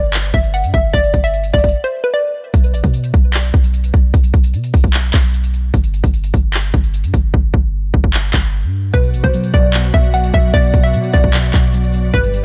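Melancholic and eerie, this half-time trap excerpt opens with a hollow, detuned square-wave pluck carrying the melody over a deep, boomy 808-style bass and an overdriven trap kit of hard-clipped kick, metallic hi-hats and handclaps, with a break from 1.7 to 2.5 seconds and the hi-hats dropping out from 7.3 seconds. At 8.9 seconds the pluck returns, joined by muted, felt-like synth keys with chorus and a distant symphonic string section holding sustained chords over a B minor harmony. The production is dark and dry, with the drums and pluck placed up front.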